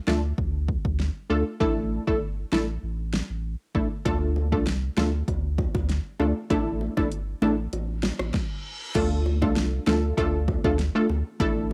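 A punchy, detuned sawtooth-and-square chord stab with a filter-pluck attack sits up front, its chorus, cassette tape grit and plate reverb giving body to a hypnotic, bouncy dancehall groove at 98 BPM in D minor that cycles between Dm and Asus4. Beneath it, a thick, saturated triangle sub bass holds sustained low notes, while an overdriven, layered electronic deep house kit with a fat snare, kick, rim click, hi-hat and crash drives the straight 4/4 feel. Round, low-tuned acoustic bongos join in the background at 4.1 seconds, and an electronic reverse cymbal at 8.3 seconds leads into a new section at 9.0 seconds in this lightly reverberant home cassette recording.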